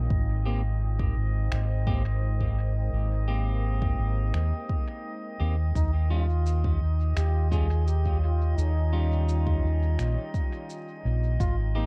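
Opening on an airy, breathy pad holding an Abmaj9 chord in Eb mixolydian, with a dark, round fingered bass up front, clean electric guitar stabs thrown into dub echo, a drifting glassy sine texture and a deep layered electronic kick, this peaceful, spacious ambient dub fragment at 85 BPM adds muffled, pitched-down finger snaps and shaker at 1.5 seconds before a close-miked, mellow trombone with light vibrato enters at 5.8 seconds over an Eb9 chord, all in a dry, echo-heavy mix.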